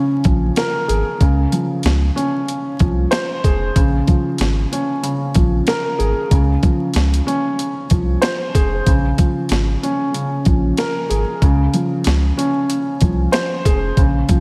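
Boom-bap hip-hop with a tough, moody swing, this excerpt sets a dark, mellow baby grand piano up front, its intimate tone carrying audible action noise and a filtered, vintage smoothness as it cycles between Bbm7 and Dbmaj7. Beneath it, a deep, round dub sub bass holds sustained notes, while a gritty, compressed sampler-style drum kit, pitched down and placed up front, pairs a thumpy kick and high-tuned snare with hi-hat. Light reverb and vinyl crackle lend the whole excerpt a dusty, worn atmosphere.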